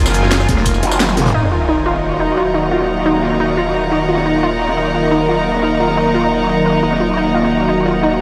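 A saturated, wobbling growl bass with overdrive and sidechain pumping takes over from a thick, up-front FM bass at 0.8 seconds in this mechanical, aggressive dark technical drum and bass cut in Eb minor at 175 BPM, beneath a sweeping, detuned sawtooth pad and a distant, earthy chamber string section, while a layered drum and bass kit with a cracking snare, low-passed cymbals and a knocking electronic kick carries the opening drop and fill, a very quiet, gritty breakbeat kit sits underneath, and from 1.3 seconds a lo-fi, warbling pluck arpeggio with delay arrives alongside an electronic sub drop, the whole mix soaked in huge, dreamy reverb.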